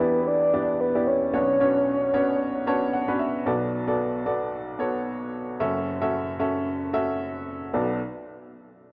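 The recording has a worn, warbling cassette-tape quality, its pitch drifting, while a moderate plate reverb adds a long tail. It is a short pop fragment, bittersweet yet driving, with a lightly swung sixteenth-note feel. A soft, octave-layered synth lead carries the melody from the start, round and dark with a sub-octave beneath it, a fast attack, and sustained notes with vibrato and chorus, until it drops out at 3.2 seconds. An upright piano, woody, smooth and vintage, sits up front with long sustain and accompanies until 8.0 seconds, adding a fill from 2.4 seconds that leads into the next section. The harmony moves from Em7 and Bmadd9 through Bm7 and F#m7 before returning to Bm7, giving the passage a wistful pull.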